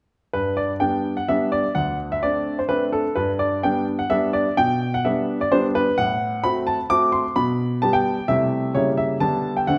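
A clear baby grand piano plays alone from 0.3 to 9.8 seconds in this short excerpt of a classical-period sonatina, its graceful, playful lines spanning D2 to D6. The piece moves in three-four time with a gently rubato feel, giving the phrases an elastic, lilting quality. Heard up front and intimate, the instrument has a natural tone, and the sound of its action is audible beneath the notes. A wet recital hall reverb with a 1.6-second decay surrounds the piano, while the sound tops out around 10.6 kHz. The harmony settles on G before moving through inverted chords and diminished colours, including C#dim7, to arrive on G/D near 9.2 seconds, shortly before the excerpt ends.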